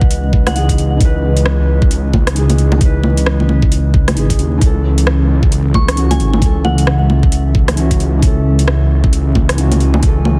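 A dense, heavily limited modern master with vinyl crackle, light reverb and a digital ambience frames this melancholic, nocturnal future garage excerpt at 133 BPM in 4/4, with a 60% swing on the sixteenths and tuning set to A4 = 435 Hz. An overdriven, knocking electronic kick sits up front alongside an overdriven garage kit of bongos, metallic hi-hats and rim clicks, while a menacing detuned saw bass, also up front, with a filter swell and saturation pumps against the sidechain. Behind them, a warbling, nostalgic tape-like pad holds sustained chords, lo-fi and softened by chorus and its own reverb. A felt-muted upright piano plays boxy, intimate accompaniment, its action noise audible and its notes trailing into dub echo. The harmony moves from C#m9 to A at 4.6 seconds, and a pure FM synth bell with chorus and digital delay touches in briefly near the start before returning with a gentle, decaying phrase from 5.7 seconds.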